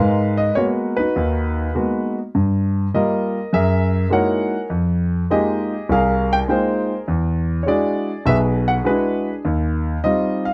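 A solo grand piano, natural and up front, carries this relaxed jazz passage at 101 BPM in 4/4 with a swung eighth-note feel, ranging from B1 up to G5. Its rich, extended harmonies move from Abm9 through Gm7, Gb13, Fm11 and E9 before settling on Eb69 at 9.4 seconds. Close, detailed microphones and light reverb give the warm sound an intimate clarity across this 10.5-second section cut from a longer piece.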